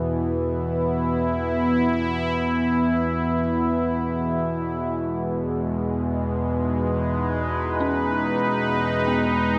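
A slow, straight pulse in 4/4 sits beneath this ominous, unsettling dark ambient drone, a fragment cut from a longer piece. Up front, a bright, detuned sawtooth pad holds sustained chords with a sweeping filter swell, while a warbling, vintage analog drone made of sawtooth and pulse waves with pulse-width modulation rumbles low beneath it, both thickened by chorus and evolving over slow attacks and long releases. A metallic bronze singing bowl, struck with a felt mallet, rings with slow beating at the very edge of hearing, adding a meditative shimmer. At 7.8 seconds a very quiet, eerie FM synth bell enters with inharmonic, decaying arpeggios, coloured by chorus and phaser. The whole scene sits in a vast, echoing space drenched in cathedral reverb, and the harmony moves from a bare open chord to a minor one at 4.9 seconds.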